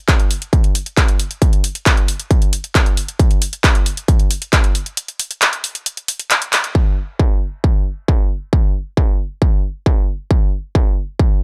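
A distorted, overdriven electronic kick drum sits up front in this driving, dark techno cut from a longer piece, pounding straight 4/4 at 135 BPM from start to finish. Alongside it, a layered electronic drum kit of crash cymbal, handclaps and hi-hat carries its own overdrive. Its hats and cymbals are sidechain-pumped and low-pass filtered, and its snare is filtered too. A break arrives at 5.0 seconds, and a drum fill and band accent land together at 6.5 seconds. The kit then drops out at 6.8 seconds, leaving the kick to drive the closing stretch alone. The sound is dry and gritty, with a hard-edged hardware character and very little room around it.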